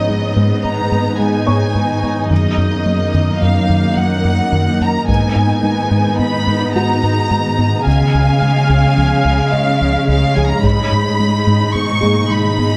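Detailed close miking on a moderate scoring stage captures this tense, brooding excerpt of hybrid orchestral and electronic film score in 5/4, where a lush violin section carries the melody over vibrato-rich violas, dark bowed cellos holding the bass, an ethereal chorused pad, a felt-muted upright piano with audible action noise, soft round plucked arpeggios and a rubbery, hollow square-wave bass riff, while dry taiko drums hit with heavy sticks in short bursts from 5.1 and 10.6 seconds.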